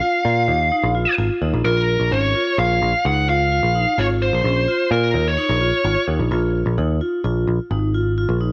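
Intricate and tense, this short progressive instrumental cut from a longer piece moves in an uneven five-beat meter with a straight feel, shifting from a minor home chord to another minor chord near 6.3 seconds. A bluesy overdriven lead guitar, dark and distorted, carries the melody up front until 6.0 seconds, while a close-miked vibraphone with medium hard mallets rings out metallic arpeggios, motor off and dry. Underneath, a picked electric bass enters at 0.2 seconds with a growly, punchy tone, all set in light reverb and studio ambience.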